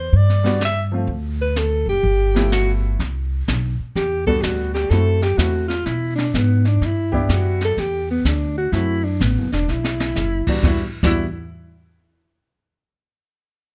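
A light reverb gives this short jazz cut a close, late-night feel, with the breathy alto saxophone and the upright bass both sitting up front. In a moody small-group swing and bop setting, the alto carries the melody from the very start, its mellow subtone tone touched with vibrato and a plate reverb sheen. The pizzicato upright bass sounds thumpy and woody beneath it, while a clear upright piano with short sustain comps from 0.4 seconds through chords such as Em9, G13, F#m7b5 and Gmaj13. The brushed kit holds a darker color in the mix, with dark cymbals, a high-tuned snare and a boomy kick. A drum fill at 9.7 seconds leads the group onto a closing Em7 at 10.6 seconds.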